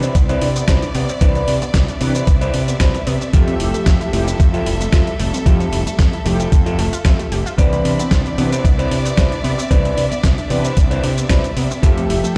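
A rich, bowed studio string section opens this groovy, sunny nu-disco excerpt with sustained chords, joined at once by a bright unison pluck playing detuned, wave-folded arpeggios in the background, while both breathe with sidechain pumping. A dark, hollow-body electric guitar plays a clean, fingered riff with subtle chorus and dub echo, over a round, fuzz-soaked fingered bass that sits prominently in the mix. A dusty soul sampler-style kit supplies hi-hat, shaker and a fat, gritty snare, and a thumpy electronic kick enters at 0.2 seconds, punching up front as the loudest part. From 1.2 seconds, a mellow synth brass adds a detuned sawtooth accompaniment with chorus and vibrato, tucked in the background and also pumping and echoing. The lightly swung groove moves between Cmaj9 and Fmaj9 chords, and the whole track sounds as if played on a big sound system in a bare room, with a large, roomy reverb.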